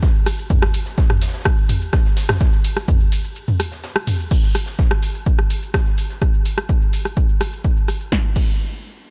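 A dry, punchy analog kick sits up front from the very start of this dark, hypnotic 126 BPM techno excerpt, alongside an analog drum machine carrying snare, hi-hat, ride, crash, rim click, shaker and toms, while a gritty, saturated acoustic shaker and high-tuned snare pump in the background with a smooth, rolled-off top until 6.2 seconds, all set in a warm studio ambience as the opening drop gives way to a brief break at 3.4 seconds.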